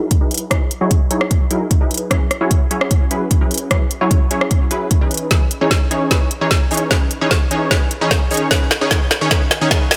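A light reverb and close, small-room ambience frame this bright, euphoric future bass passage, cut from a longer piece and moving with a half-time feel in 4/4. A detuned sawtooth supersaw stab carries the riff up front, its fast attack and filter pluck giving it a punchy edge while sustained unison voices shimmer through analog chorus, sidechain pumping, a low-pass filter and digital delay. An electronic kick drum sits forward with a layered, tape-tinged thump, joined by a trap drum kit of woody snare, rim click and crisp hats. The whole stretch works as a build-up, with a filter sweep running across the supersaw from 0.0 seconds and a drum fill arriving at 5.3 seconds and running to the end. Underneath, the harmony moves through F#13sus4, E69, C#m9 and B69.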